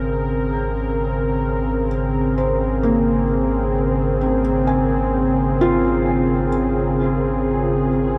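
At a slow, straight 65 BPM in 4/4, this serene ambient fragment rests on a single Bbm9/Ab chord, tuned to A4 = 437 Hz. An up-front, smooth analog pad of detuned sawtooth tones swells in with a slow attack and chorus to hold sustained chords, while a soft, felt-muted upright piano plays mellow, intimate arpeggios with audible action noise through a diffuse ambient delay. Beneath them a deep, round sine sub bass sustains Ab1 with tube saturation, and a huge 7.3-second reverb gives the whole piece a dark production.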